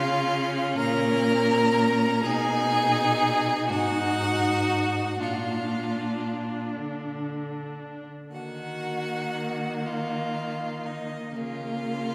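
A slow 6/8 pulse of 40 beats per minute, counted in dotted quarters, moves with uneven beats and free rubato through this elegiac, yearning classical string quartet movement. All four bowed players sound throughout the 12.1-second excerpt, each a single player with clear vibrato. The first violin carries the melody between Eb5 and Bb5 with a focused, close tone, while the second violin's line, from Eb4 to Bb4, sounds smooth, even and more distant. The viola fills in accompaniment from Bb3 to Eb4 with a focused tone, and the cello's bass, ranging from Ab2 to Eb3, sits up front. A wet church reverb lingering about 2.9 seconds surrounds the ensemble as the harmony passes from Bbm/Db through Abm/Cb, Bb and Ebm before settling back on Bbm/Db at 11.4 seconds.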